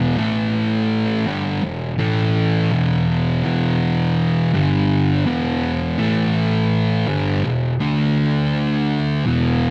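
A thick, dark fuzz guitar, double-tracked and up front with distortion and analog delay, plays alone in this sludgy, ominous metal excerpt at 83 BPM in E minor, its picked power chords moving through A5, E5, G5 and D5 between E2 and D4 over light reverb until 9.7 seconds.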